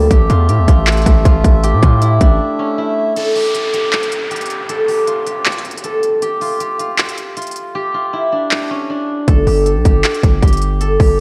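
An up-front, bright steel-string zither played with fingerpicks carries a ringing, silvery melody through a low-pass filter and analog delay across this menacing, hard-hitting half-time trap cut at 157 BPM, tuned slightly low at A4 = 438 Hz. A reedy, breathing harmonium sustains chords only until 3.1 seconds, while the overdriven trap kit, with its hard-clipped kick, crisp hi-hats and handclaps re-recorded in a large room, punches throughout, its hats muted from 7.8 to 9.3 seconds. The distorted, saturated 808-style bass hits heavy and aggressive at the start, drops out at 2.4 seconds for a long break marked by an electronic downlifter from 3.2 seconds, and returns at 9.3 seconds under light digital ambience.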